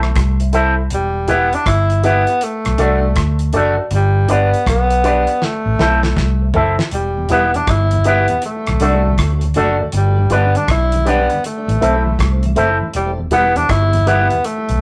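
Meditative and hypnotic, this roots reggae excerpt at 80 BPM in E minor sets an up-front, vibrato-tinged tenor saxophone melody over a round, foam-muted fingered electric bass, dry damped 70s drums with a fat snare and a fill at 5.4 seconds, woody, slightly detuned upright piano stabs, and twangy electric guitar through an envelope filter, while a tonewheel organ with key click enters in the background at 7.2 seconds through a rotary speaker and tape echo, captured as a rough rehearsal-room recording with moderate reverb.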